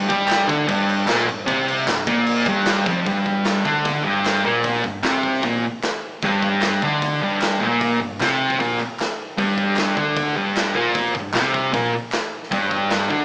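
Heard through a small-speaker, live-in-one-room sound with light reverb, this rowdy garage rock excerpt at 152 BPM in 4/4 opens on a G5 chord and pushes an up-front, double-tracked fuzz guitar riff over a very quiet, overdriven growling bass, a gritty, saturated drum kit with punchy kick and crash cymbal in a pumping stone room, and a hollow, distant group handclap in the background, moving into a new section at 3.1 seconds.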